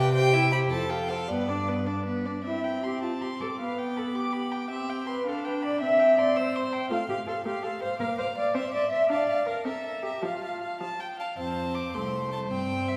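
Classical-period string quartet in a quick, spirited and graceful 6/8 at 107 BPM with rubato, moving from C major to F major at 6.9 s. Throughout, one close, gut-strung violin carries the melody over a second violin with light vibrato, a distant, reedy viola accompaniment and a dark, smooth-topped cello bass up front, all heard from further back in a wet scoring-stage reverb in this brief excerpt from a longer movement.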